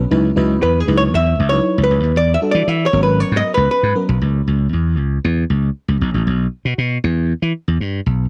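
A growly, punchy slap bass opens this short cut from a slick, late-night early-eighties boogie funk piece at 117 BPM in a straight 4/4, and it carries on for the full 8.3 seconds. Over it, a lush, detuned FM electric piano with a soft pad layer and chorus moves through C#m11, Em11 and G#m11 in C# dorian. Meanwhile a dark, clean, picked hollow-body archtop guitar plays an up-front melody, and both parts are gone by 4.2 s, where the music turns to C# minor under light digital reverb.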